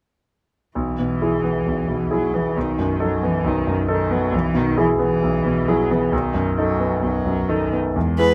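Spirited and graceful, this quick classical-period movement for piano trio runs at 134 BPM in a straight 4/4 in E major, cut from a longer piece. The concert grand piano carries the accompaniment from 0.8 s, reaching from deep bass notes at B1 up to A4. Its clear, up-front tone has a vintage character and short sustain over a harmony that alternates between E/B and B7. Alongside it, a single bowed cello supplies a rich, focused second line with vibrato in a narrow span from D#3 to G#3, set more distant in the mix. The violin, close and up front, enters only at 8.2 s with a brief, smooth B4 sung out with vibrato, just before the piano and cello finish at 8.3 s. A light reverb lends the trio a gentle sense of space.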